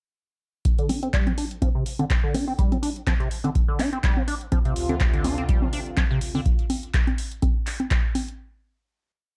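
Driving and hypnotic, this short acid house piece runs at 124 BPM in D minor with a 16th-note swing, grounded in a Dm7 chord and a dark, lightly reverberant production. An up-front, deep electronic kick pounds four-on-the-floor beside a booming analog drum machine whose metallic hats, high conga and claps were re-recorded in a large room, while a squelchy, resonant square-wave acid line with slides runs a 12-step loop that drifts against the bar, coloured by phaser, cassette tape and tape echo under a filter sweep until 6.5 seconds. From 4.5 seconds a detuned sawtooth pad adds soft-attack sustained chords with chorus and sidechain pumping.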